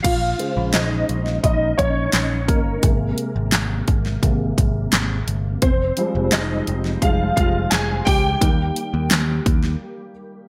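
A warm, up-front concert grand piano leads this uplifting piano-driven pop excerpt at 86 BPM, its deep low end carrying a solo through chords moving from Bbm7 to Abadd9, Fmadd9 and Eb, with an ensemble chorus effect on its tone. Beneath it, a picked electric bass adds a direct, amped electric foundation, while a layered, punchy pop drum kit with a fat snare, bright hi-hats, handclaps and crash cymbal sits prominently, treated with gated reverb. The bright 1980s-style digital production has light reverb, and the bass and drums stop at 9.7 seconds, leaving the piano to carry a brief break to the end at 10.5 seconds.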